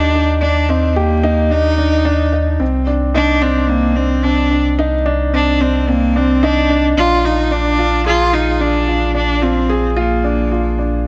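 A single bowed cello carries the melody up front, its earthy, dark tone touched with light vibrato and a smooth top, in this luminous, tender piece of piano and strings electronica at 110 BPM in a straight 4/4. Alongside it a mellow baby grand piano plays a short-sustained riff, while a round, sine-like sub bass with a fast attack holds deep, sustained notes through the harmony of Ebmaj7, Cmadd9 and Bb7. Light reverb and studio ambience frame this brief passage, which is cut from a longer piece, with all three parts playing throughout.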